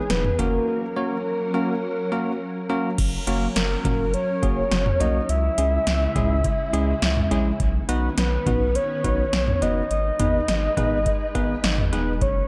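A straight 4/4 pulse from an electro analog drum machine drives this cool, melancholic synth-pop excerpt, its deep kick, punchy snare, metallic hats, cowbell, toms and crash sitting up front with analog delay, while a round, dark analog bass anchors the low end. A soft, octave-layered synth lead with chorus, vibrato and analog delay carries the melody over silky, warbling string-machine chords and a barky, bell-like tine electric piano touched with subtle chorus. After a break from 0.7 to 3.0 seconds the music moves into a new section, all within an echo-heavy mix bathed in moderate spring reverb.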